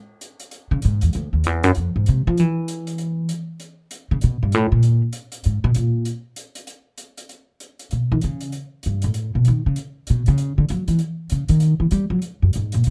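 A swung 4/4 at 195 BPM carries this moody, late-night jazz excerpt, where a woody, up-front pizzicato upright bass with steel strings solos throughout from 0.7 seconds, ranging from D2 to G3, over a faint small-room hi-hat that enters at 0.2 seconds, the dry sound moving from G# minor to B major at 7.3 seconds.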